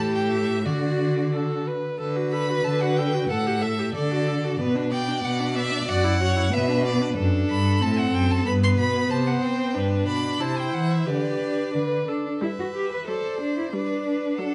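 Spirited and graceful, this quick classical-period movement for string quartet moves in a brisk two-beat metre with a straight feel, and it is cut from a longer piece. All four bowed instruments play from start to finish, each a single player using vibrato. The first violin carries the melody high in its range with a clear, focused, somewhat distant tone, while the second violin adds a rich second line beneath it. The viola fills in the accompaniment with a smooth, even sound, and the cello anchors the bass up front with a warm, expressive voice shaded by portamento. A moderate large-studio reverb gives the ensemble a gentle sense of space, and the recording's top end is softly rounded.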